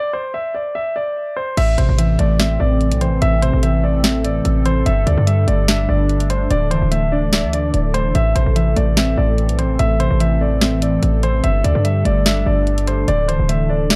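Half-time trap rhythm drives this melancholic, brooding hip hop excerpt, where an intimate concert grand piano with audible action noise, low-pass filtering and tape echo carries the melody alone until 1.6 seconds, when punchy, heavy 808-style bass, an up-front trap drum kit with sharp snare, bright hi-hats and crash cymbal, and warbling, nostalgic lo-fi synth keys with chorus enter, joined at 2.1 seconds by a deep, moody analog pad with chorus and phaser sitting in the background, all inside a dark, warm production moving through Am, Gsus2 and Dsus2.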